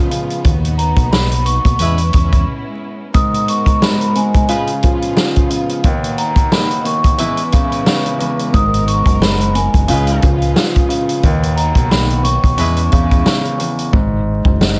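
Tough and gritty, this boom-bap hip-hop excerpt moves at 89 BPM with a swung 4/4 pulse, built on a punchy, up-front vintage drum kit and a dark, intimate baby grand piano whose cassette-tape grit and audible action noise sit close, over jazzy chords such as Bmaj7, G#m9 and C#7. A round, deep fingered electric bass plays from 0.4 seconds, drops out, then returns at 8.5 seconds, while a ringing vibraphone with soft mallets and slow motor vibrato carries the melody through a digital delay, and a distant, roomy horn section adds stabs. A bowed string section holds soft sul tasto chords in the background, a brief break arrives at 2.5 seconds, and the hi-hats fall silent at 13.9 seconds under light reverb and vinyl crackle.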